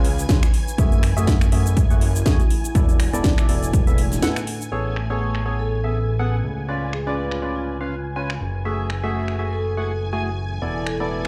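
A swung 122 BPM groove in A major drives this uplifting, joyful piano house cut, with a punchy, overdriven electronic kick up front until 3.8 s and a house kit of cracking snare, metallic hats, finger snaps and shaker, filtered and re-recorded in a large room. A fat, nasal analog bass pumps with sidechain beneath a hollow, percussive organ stab riff with lush chorus and tape echo, a silky, bright string pad and a deep, moody ambient pad, all moving through lush chords like F#m9, E7sus4 and Amaj9. After a short break, a ringing vibraphone melody with tape echo enters in the background at 5.6 s, and the whole mix sits in a big, reverberant space.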